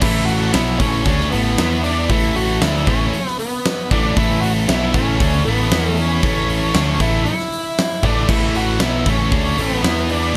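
Quiet-loud alternative rock in A major at 116 BPM, this bittersweet, anthemic excerpt stacks a dark octave-fuzz lead guitar melody over a bright high-gain guitar riff and a thick fuzz guitar riff, grounded by a growling, round overdriven picked bass and a huge up-front arena drum kit with punchy kick, fat snare, bright crash and hi-hat, all moving between A and E5 chords in a small room ambience.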